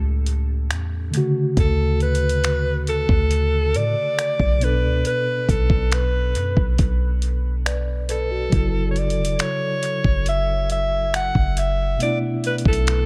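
A breathy, whispered alto saxophone enters at 1.6 seconds with an intimate, jazz-style solo trailed by dub echo in this sensual, late-night contemporary R&B excerpt, carried by a mellow tine electric piano that also echoes, a deep, boomy 808-style bass and a gritty, compressed sampler-style kit of finger snaps, hi-hat and thumpy kick, set in an echo-heavy digital ambience.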